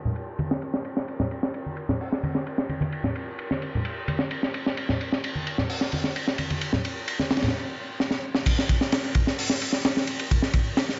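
Heard through a small, low-passed room, this funky, playful breakbeat fragment pairs a gritty, saturated drum kit with a punchy kick, a high-tuned snare and rolled-off cymbals and hats against bright congas played with soft hands, until the congas fall away at 7.5 seconds and a filter sweep running from the start leads into a brief stop and drum fill before the kit lands in the drop at 8.5 seconds.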